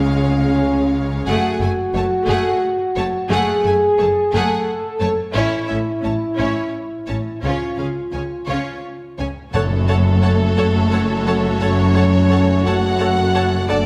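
An up-front French horn section holds smooth-topped sustained chords through this dark, heroic cinematic passage in F# minor, moving slowly at 58 BPM in 6/8 over harmony running from C# through F#madd9 and A. Bowed strings with vibrato fill the texture: a clear, even violin melody sits close above a rich, focused second violin line and an intense viola accompaniment, while woody cellos and rich, smooth double basses anchor the bass from a distance in a reverberant scoring-stage space. At 9.5 seconds a bright, very quiet trombone section and a lush background string section add sustained chords, and hard-mallet timpani strike briefly until 10.5 seconds.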